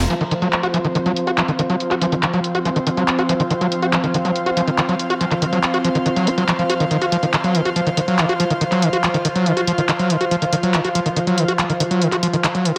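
This psychedelic trance fragment, cut from a longer piece, drives at 141 BPM in a straight 4/4, tuned to A4 = 438 Hz and carrying a hypnotic, intense mood over an F5 chord. Up front, a screaming acid riff in sawtooth tone sits between Eb3 and Gb4; it is squelchy, resonant and aggressive, with a fast-attack, decaying filter pluck soaked in distortion, chorus and dub echo. A layered electronic drum-and-bass kit of handclaps and hi-hat also sits forward, with low-pass filtering dulling its hats, cymbals and snare. In the background, a mellow wavetable pad holds sustained chords from F3 to F4, morphing and warbling with a vintage, detuned sine character, slow attack and long release, plus chorus and its own reverb. Above it, a soft, breathy pad of detuned triangle and sawtooth tones with a noise layer spans F4 to Bb5, while a filter sweep moves across the ambient pad. A moderate digital room reverb of about 1.0 s ties the mix together.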